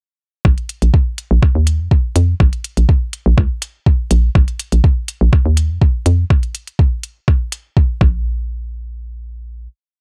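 A straight four-on-the-floor pulse at 123 BPM in 4/4 drives this short, complete minimal techno piece in Bb minor, with a soft, tape-tinged electronic kick sitting up front. Clicky programmed hi-hats and a backbeat sit lower in the mix, entering at 0.6 seconds just after the kick. The star is a hollow, knocking FM bass playing a bouncy, syncopated riff between Bb1 and F2, its fast attack and decaying, mellow tone giving it a punchy, quirky character, while sidechain pumping makes it breathe. The sparse groove carries on until the drums drop away near 8.1 seconds, and the bass then lands a final hit that rings on to about 9.7 seconds. A digital ambience surrounds the whole arrangement.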